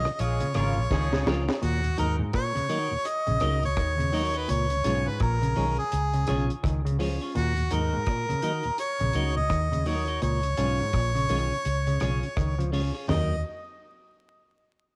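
Laid-back and hypnotic, this roots reggae passage, cut from a longer piece, sways on a swung sixteenth-note feel over a home-recorded cassette sound dusted with vinyl crackle and light studio reverb. A clear, up-front harmonica carries the melody with light vibrato, its tone coloured by cassette tape and dub echo. Beneath it, a foam-muted fingered bass sits round and punchy at the front of the mix, while a deep, dry drum kit with a high-tuned snare and tight kick adds a drum fill from 0.9 to 1.6 seconds. A tight, vintage horn section plays a brief second line with dub echo until 1.5 seconds. A twangy, picked clean electric guitar with lush chorus and dub echo, a stringy auto-wah clav playing arpeggios through a combo amp, and a mellow tonewheel organ with key click and slow rotary speaker in the background fill out the accompaniment.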